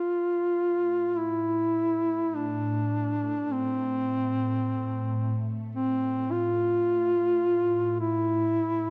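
A mellow duduk opens this short excerpt from a Caucasian folk lament, singing a mournful, solemn melody in A minor in free time, its vibrato and close-miked, folk-style tone placed up front as the solo voice. Its line stays within a narrow span from C4 to F4. At 1.2 seconds an ethereal, airy pad slides in beneath it, holding a low A2 drone with a slow attack and long release. The pad is full-bodied and detuned, blending sawtooth and triangle tones with a noise layer, and it carries ensemble chorus, its own reverb and a phaser, sitting well behind the duduk in level. A lush scoring stage reverb with a 2.0-second tail surrounds the pair, and the production is dark and warm, lending the fragment a hushed, grieving atmosphere until it breaks off at 8.9 seconds.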